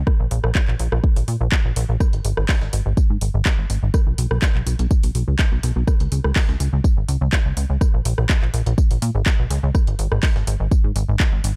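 A straight 4/4 pulse at 124 BPM drives this dreamy, emotional progressive house excerpt, with a punchy, up-front electronic kick and a house kit of handclaps, rim clicks and metallic hats starting at 0.1 s. A plucky analog bass, funky with sawtooth and square-wave tones, a filter pluck and a moving notch, pumps from the sidechain between G#1 and A#2, while from 2.0 s a gritty, compressed sampler-style breakbeat kit adds high-passed hi-hat, tambourine and a high-tuned snare in the background. The production is dark, set in a digital ambience.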